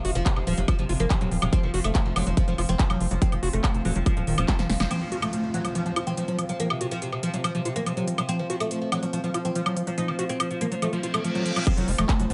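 A bright, woody oud carries the melody through phaser and digital delay in this psychedelic trance excerpt at 142 BPM in 4/4, tuned to A4 = 438 Hz, with a squelchy, distorted acid bass riff and a resonant, overtone-sweeping drone pumping under a faint, breathy pad for an alien, psychedelic mood. An up-front electronic kick and a punchy sawtooth sequencer bass drive the opening alongside an overdriven drum kit with crisp hats, claps, snare and woodblock, until a drum fill and band accent lead into a break at 4.9 seconds where the kick and sequencer bass fall away and a filter sweeps the drone. Background downlifter effects fill the break, and a reverse cymbal from 11.0 seconds pulls the kick and sequencer bass back in at about 11.7 seconds, all in a light digital ambience.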